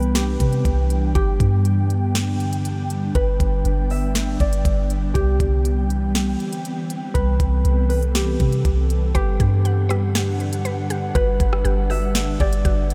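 A concert harp, an ethereal pad, a soft 808-style bass and a trap drum kit open this blissful, dreamy piece of atmospheric cloud-rap together, set at 120 BPM in 4/4 with a half-time feel in G major. The acoustic harp carries the melody between G4 and E5 with a ringing tone and a touch of tape echo, while the airy pad sustains slow-blooming chords beneath it, softened by ensemble chorus and its own reverb and gently pumping from sidechain compression. Up front, the round, deep 808 bass and the electronic kit set the pulse with a knocking kick, sharp snare, rim click and crisp hats. The chords move from Cmaj7 to G, back to Cmaj7, and then settle on Gmaj7 at 9.2 s. Just before that change, at 9.1 s, a woody, percussive synth pluck slips in with quiet arpeggios, shimmering with chorus and tape echo, and the whole excerpt sits in a light reverb.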